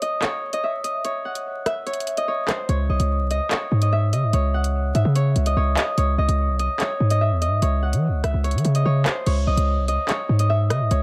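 A ringing, fingerpicked Celtic harp carries the melody up front through a dub echo in this cold, tense half-time drill cut from a longer piece, where electronic drums with bright hi-hats, handclaps, rim clicks and crash cymbal play from the start before a punchy, heavy 808-style bass with a sine tone, noise layer and fast, decaying attack drops in at 2.7 seconds, all in a dry, echo-heavy mix dusted with vinyl crackle.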